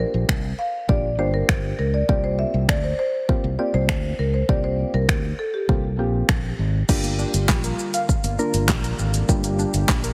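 A heavily compressed, radio-style mix with light reverb frames this confident, driving dance-pop excerpt in G minor at 100 BPM. A dry, woody marimba with digital delay carries the melody over soft, warbling electric-piano-like synth keys with chorus, a punchy fingered electric bass pumping to the sidechain, and an up-front deep house kit with deep kick, fat snare, handclaps, finger snaps, hi-hat, shaker and crash. The marimba stops at 6.4 seconds, and at 6.9 seconds a smooth, slow-attack analog pad and a tight, detuned sequenced synth playing arpeggios through phaser and delay join in the background as the harmony settles on Gm7.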